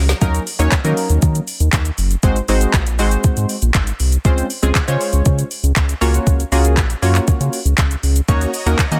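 Driving and confident, this dance-pop excerpt moves at 119 BPM in Eb dorian, opening on a drum fill before dropping at 0.2 seconds into a Ebm7, Ab7, Dbmaj7, Gbmaj7 progression. A round, deep analog bass with sidechain pumping sits up front beside a smooth R&B drum kit with a soft kick, woody snare and metallic hats, while a punchy, funky sawtooth polysynth comp with chorus and filter sweep carries the accompaniment. Very quiet detuned supersaw chords flash briefly at the start and return at 8.3 seconds, and a distant, crisp group handclap sits far back in a large room against an otherwise dry mix.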